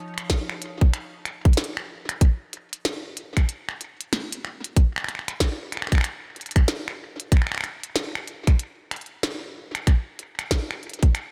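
IDM with a glitchy, cerebral mood, this short excerpt swings its sixteenths over a steady 4/4 pulse. A glitchy kit of finger snaps, clicky hats and a tiny snare enters at 0.2 seconds, carrying a tape echo, and a tight electronic kick joins a moment later at 0.3 seconds, sitting up front. Both drum parts sound re-recorded in a small room, placed within an echo-heavy mix of light reverb and digital ambience.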